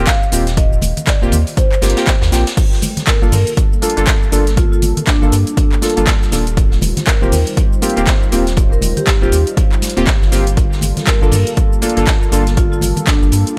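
A smooth, hypnotic deep house groove in G minor at 120 BPM with a swung sixteenth feel sits in a small room: a punchy, up-front electronic kick and an overdriven house kit of crash, handclaps, bright hats and shaker play alongside a rubbery, nasal square bass and mellow, pumping chord stabs with chorus and delay, while a natural-sounding vintage kit of hats and snare and bright, high-tuned congas stay in the background; a quiet marimba melody with tape echo plays until 2.3 s, a dark, detuned analog pad with chorus arrives at 2.9 s, and a metallic, ringing vibraphone line with delay takes the melody from 3.1 s.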